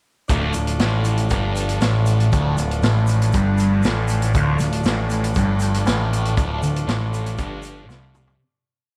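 A straight 4/4 pop groove on a punchy, rolled-off vintage drum kit drives this short, trippy and dark psychedelic rock piece, where a double-tracked, phased fuzz guitar sits up front with a single-note riff that the growling, overdriven picked bass doubles, a buzzy combo organ holds sustained chords beneath, and a grainy egg shaker sits very quiet and distant with a large-room sound, all set in light reverb and small-room ambience, before a fade-out from 6.4 seconds closes on a drum fill at 7.9 seconds.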